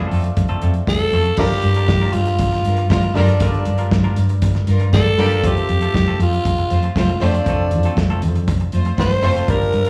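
Disco with a sultry, driving pulse, heard as a short live cut through a club PA with small-room ambience and a touch of reverb. A baby grand piano opens with a brief solo, intimate with audible action noise, as a soul drum kit with dark cymbals, a medium-tuned snare and a tight kick settles in. A round, dark hollow-body bass sits up front. A clean, compressed semi-hollow guitar and the piano hang in the background, both treated with plate reverb and slapback echo. From 0.9 s a growling tenor saxophone takes the lead, breathy and raspy with scooped notes and gritty subtone, bathed in plate, slapback and tape echo. At 2.6 s a lush, bowed string section adds a focused second line with vibrato over harmony moving from G minor seventh to F.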